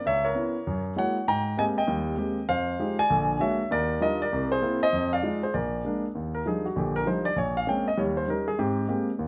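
A solo grand piano carries this brief jazz passage, its tone intimate and up front, with short sustain and audible action noise that bring the listener close to the instrument. The playing swings in 4/4, spanning a broad range from low Bb1 up to Bb5. The harmony moves through rich extended chords, opening on Dbm7 and Gb9 before settling toward Ebmaj9 by around 3.7 seconds, then cycling through a turnaround back to the home chord. At 6.1 seconds a new section begins with the piano stepping into a solo passage that heads toward Abmaj9 by the close at 9.3 seconds. Close, detailed microphones capture the instrument inside a moderate large-studio reverb, giving the sound a gentle sense of space around its intimacy. Cut from a longer piece, the fragment feels swinging and warm throughout.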